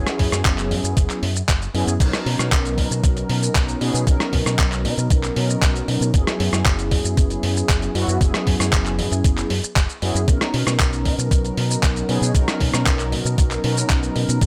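Nu-disco in B major at 116 BPM, groovy and sunny, where a mellow, round, detuned synth brass with chorus and tape echo sustains F#7sus4 and Bmaj7 chords over a fingered electric bass shaped by an envelope filter, a gritty, overdriven soul sampler-style kit placed up front with crash cymbal, handclaps, hi-hat, rim click and shaker, and a thumpy electronic kick, set in light reverb and cut from a longer piece.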